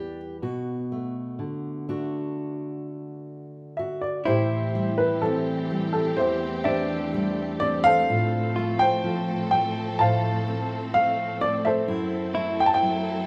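A straight, unhurried 4/4 pulse at 63 BPM carries this melancholic, intimate acoustic folk-pop ballad, cut from a longer piece, where a woody upright piano sings the melody up front over fingerpicked steel-string acoustic guitar with audible finger squeak, until at 4.3 seconds a lush, bowed symphonic string section with vibrato adds sustained chords and a clean, compressed, direct-recorded electric guitar picks arpeggios through harmonic tremolo, all sitting in a large studio reverb as the band plays live in one room through chords moving from Bm7 to Am7, F/A and F#m7b5.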